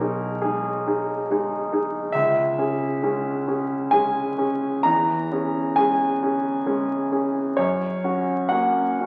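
This is a classical romantic nocturne for solo piano, nostalgic and dreamy in mood, in 3/4 time at a slow 59 to 71 BPM with a freely flowing rubato. A single concert grand carries the whole 9.1-second fragment, which is cut from a longer piece. The piano sounds clear and natural, with a deep bass, and sits up front, spanning B1 to A#5. The harmony moves from G#m/B to C#m, then C#m/E, arriving on F# at 7.6 seconds, with the instrument tuned slightly low to A4 = 436 Hz. A wet recital hall reverb surrounds the playing, while the crackle of a very old 78 rpm record lends the sound an aged quality.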